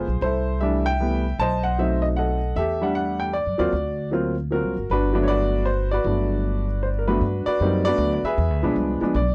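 A clear, intimate upright piano carrying the melody, its action noise audible, and a growly, woody pizzicato upright bass open together in this relaxed, swinging jazz waltz at 154 BPM in G major, moving through rich chords such as C6, Em11 and Gmaj9 in a dry, close 1970s-style studio sound with light reverb, before shifting to a new section at 7.2 seconds.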